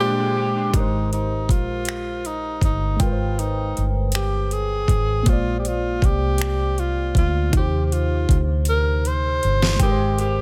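A breathy tenor saxophone carries the melody up front in this late-night, yearning slow R&B cut in six-eight, its jazz-style phrasing marked by light vibrato, scooped notes and a smooth top. It opens over a brief break in which a very quiet sawtooth pad, an electric guitar at the edge of break-up and a mellow FM electric piano sound together before the rhythm section arrives at 0.7 seconds. From there a produced electronic drum kit with a knocking kick, deep snare, metallic hats and finger snaps sits up front beside a dark, foam-muted fingered bass with a round, amped tone. The electric piano supplies a warbling, vintage accompaniment with chorus, while the twangy, slightly broken-up guitar adds a second line dressed in lush chorus, returning after a drum fill that starts at 8.7 seconds. The harmony moves through chords such as Abmaj9, Bb9 and Eb6, and the mix is dry.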